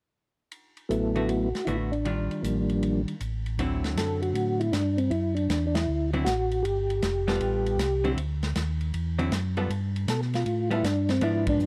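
A distant, roomy soul drum kit on hi-hat, kick, snare and ride opens this greasy, soulful soul jazz organ trio at 157 BPM with a swung feel in D mixolydian, joined at 0.9 s by two up-front tonewheel organs, a soft, flute-like percussive melody and a dark, round, lightly overdriven bass line, both turning through a slow rotary speaker with chorus vibrato, and at 1.2 s by a clean, compressed hollow-body jazz guitar accompanying over chords such as Ebmaj9, D9 and G9, with the band hitting a shared accent at 5.7 s in a mix carrying little reverb.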